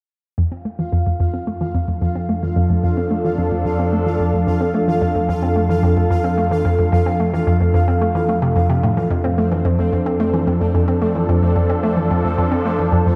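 Luminous and expansive, this ambient, sequencer-driven space music at 110 BPM in F major sets an evolving, airy sawtooth pad on sustained chords and a hollow, bouncy square-wave pluck riff up front, both with chorus and filter sweeps through the first 9.1 seconds, while a quieter pulsing, tempo-synced triangle texture with built-in reverb joins at 0.8 seconds, all bathed in a wet spring reverb and echo-heavy mix in this cut from a longer piece.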